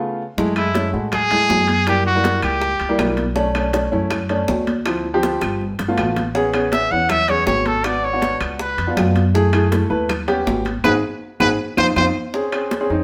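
A dark, mellow baby grand piano opens this sophisticated, fiery Afro-Cuban jazz excerpt in F# minor at 161 BPM, and at 0.4 s the pizzicato upright bass, woody and steel-strung, joins with high-tuned congas, tight hard-handed bongos and, just after, vintage claves and ringing metal-shell timbales, all in a moderate stone room where the band plays live together. An up-front solo trumpet, bright and jazz-styled with vibrato, plays between 0.6 and 3.1 s and returns at 6.7 s over rich harmony such as F#m9, C#7b9 and D#aug7. Drum fills and a closing band accent mark the final moments.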